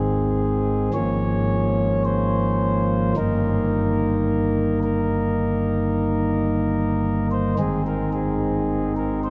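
A long cathedral reverb, decaying over 4.7 seconds, surrounds a single chamber organ that still sits up front and close. This brief classical passage, cut from a longer chorale-style piece, moves in a straight 4/4 with a majestic, reverent mood. The organ's principal stop has a warm, smooth chamber voicing with a touch of chiff, and it spans from a deep G1 up to Db5. The harmony rests on Ab, shifts to Bbm7 over an Ab bass at 0.9 seconds and Eb over G at 3.2 seconds, then settles back on Ab at 7.6 seconds. Tuned to A4 = 438 Hz, the organ plays alone for the full 9.3 seconds.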